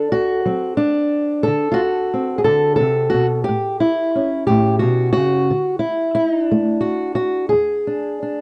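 A fingerpicked old ladder-braced acoustic guitar, dark, woody and boxy with old strings, sits up front in this swaggering, rollicking acoustic country blues excerpt at 59 BPM in a straight 12/8, moving through D7, A, D5 and E7 across 8.4 seconds in a dry, close 1970s-style studio sound with light reverb.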